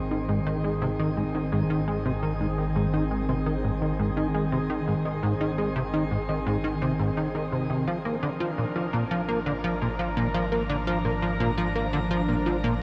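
A punchy, funky plucked analog bass riff sits up front, its sawtooth and pulse-wave tone snapping in with a fast attack and decaying through cassette-tape grit, analog chorus and tape echo in this cosmic, expansive piece of sequencer-driven space music, cut from a longer work. Alongside it, a detuned, morphing wavetable pad, also up front, holds mellow sustained chords with a slow attack and long release, while a warbling, vintage analog drone, resonant and tube-saturated, hums low under chorus. A lush shimmer reverb with an 8.5-second tail bathes the mix, and the harmony shifts over its steady bass note at 7.9 seconds.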